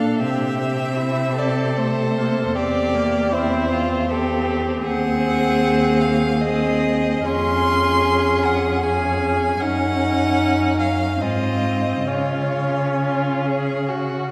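Up front, an expressive cello with soft attacks and portamento anchors this tender, rubato classical movement in 3/4 for string quartet, while a clear, smooth first violin sings the melody, a focused second violin carries the inner line and a distant, rich-toned viola accompanies, all bowed with vibrato and bathed in a church reverb, in a passage cut from a longer piece.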